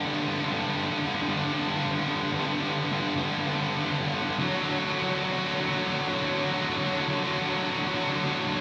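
A lightly reverberant room sound frames this short metal excerpt, with the feel of a band playing live together. A distorted electric guitar carries it alone from 0.0 to 8.6 seconds, picked, double-tracked and placed up front in the mix. Its tone is warm and distorted, sitting in a low register between G2 and F#3. The tempo is 104 BPM in 4/4, but a half-time feel makes the groove land heavier and slower than the count suggests. The harmony moves from G5 to D at 4.4 seconds, and the mood is aggressive and heavy throughout.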